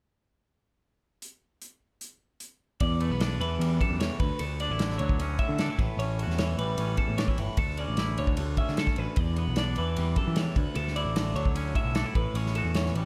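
A light reverb colors the recording, with the loose indie drum kit sitting up front. This playful, wistful math rock and midwest emo passage is cut from a longer piece and moves at 151 BPM in a straight 4/4 in D major. The acoustic kit, recorded in a small room, opens alone at 1.2 seconds, with hi-hat, ride, a tight kick and a medium-tuned snare. At 2.8 seconds the rest of the band enters together. A twangy, clean electric guitar plays warm accompaniment, a compressed twelve-string electric guitar picks bright, spring-reverbed arpeggios high above it, and a growling overdriven bass drives underneath. The band cycles through Em7, Dmaj9, A9, Dsus2 and Bm11/D before returning to Em7 and Dmaj9 and arriving on Aadd9.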